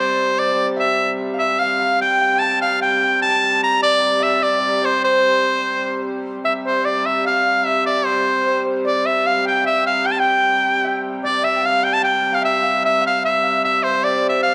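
Bathed in the long, wet reverb of an echo chamber, this festive, rustic medieval dance in 3/4 moves at a straight 150 BPM in C mixolydian, cut from a longer piece and shifting into a new section at 6.4 s. An edgy shawm with folk-style vibrato carries the melody up front as soloist, while a very quiet fingerpicked concert harp rings beneath it, and an airy alto recorder with a soft attack, chiff and lifted highs slips in at 1.6 s. Under them all sits a dark, nasal, boxy hurdy-gurdy drone, wheel-bowed and keyed by one player.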